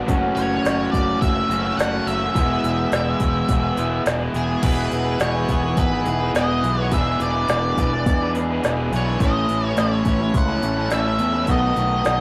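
This short excerpt of wistful, dreamy shoegaze and dream pop opens with three picked electric guitar riffs together: one through a small old amp, lo-fi, compressed and slightly broken-up, alongside an overdriven guitar and a bright, double-tracked raw garage guitar sitting in the background. At 0.1 seconds a growling fingered bass, overdriven and bright, joins with an organic electronic drum kit whose soft kick, woody snare, crisp hats and crash cymbal sound re-recorded in a small room. An octave-fuzz lead guitar enters at 0.4 seconds, carrying the melody with a dark, distorted tone above the riffs. The song moves at 105 BPM in a straight 4/4 in E major, drifting from F#m7 and E into a second section at 4.6 seconds that passes through Emaj7, E7, A and B7. A moderate stone-room reverb and tube saturation give the whole a rough rehearsal-room sound.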